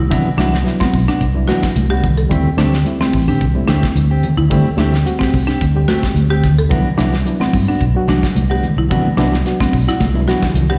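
Heard as a live gig through the venue's PA with recital hall reverb, this hypnotic, funky afrobeat excerpt moves at 109 BPM in 4/4 with a light sixteenth-note swing over Cmaj9#11 and D7sus4 harmony. A round, up-front fingered electric bass anchors the groove while a woody marimba plays arpeggios, a reedy, worn electric piano with fast tremolo accompanies, and a dark, clean electric guitar adds stabs, with slapback echo on the marimba, piano, guitar and congas. A dry, damped 70s kit with a fat snare and tight kick drives the beat beside distant, high-tuned congas in the background, and a drum fill closes the passage from 10.0 seconds.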